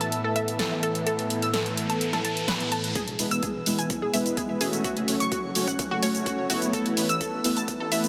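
A straight 4/4 pulse at 127 BPM drives this euphoric, expansive progressive house excerpt in A major: an up-front deep house kit of cabasa, hi-hat and punchy snare plays alongside a lush, thick, warbling chorused pad and bright, detuned analog pluck arpeggios with cassette-tape character and digital delay; a background riser appears at 1.0 s; and at 3.0 s a deep electronic kick, joined moments later by a round, dark analog bass and then mellow, full-bodied supersaw stabs under a filter sweep, opens a build-up that ends in a drum fill from 6.7 s, set in a huge ambient reverb within a dense, heavily limited master.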